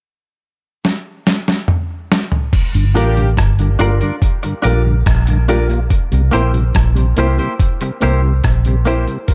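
A straight 4/4 dub reggae groove at 71 BPM in G dorian opens with a gritty, overdriven sampler-style drum fill from 0.8 to 2.5 seconds, then settles into a deep, meditative pulse over Gm7 and C7. Between 2.7 and 3.0 seconds it is joined in quick succession by a round, foam-muted bass up front, a mellow tonewheel organ with chorus vibrato and slow rotary speaker, dub-echoed stabs from a worn, woody, slightly detuned upright piano, and a clean hollow-body guitar with dub echo. Brief background horn-section touches with dub echo arrive at 3.0 and 9.3 seconds, all in a dry, dark production.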